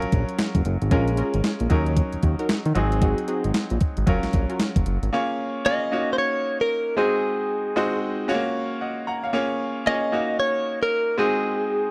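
Punchy and bouncy, this excerpt of new jack swing R&B moves at 114 BPM in Bb minor with a swung sixteenth-note feel, as a bright grand piano comps through a Gbmaj7, Bbm7, Ebm7, Ab7 cycle while a fat, detuned analog bass and a crisp, overdriven 8-bit drum machine with a thumpy kick drive the opening until 5.1 seconds. A funky polysynth with a chorused, mellow sawtooth tone adds plucky stabs near the start, and from 5.7 seconds a clean, compressed electric guitar recorded direct takes the melody with slapback echo. The sound is dry and close, like a 1970s studio session, with the piano, bass, drums and guitar sitting up front.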